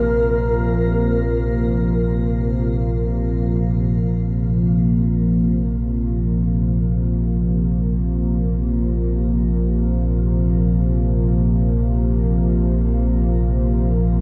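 Dark ambient drone in free time, dark and ominous, cut from a longer piece and tuned to A4 = 438 Hz, built on a Bb5 chord. A deep, rumbling drone sits up front through the full 14.2 seconds alongside a sweeping, resonant pad of evolving, detuned sawtooth chords with chorus and shimmer reverb. A breathy, hollow shakuhachi sounds a brief Bb4 melody with chiff, delay and shimmer until 2.7 seconds, while an icy, crystalline glass pad glints faintly in the background until 3.9 seconds, all bathed in a huge reverb with an 8.7-second tail.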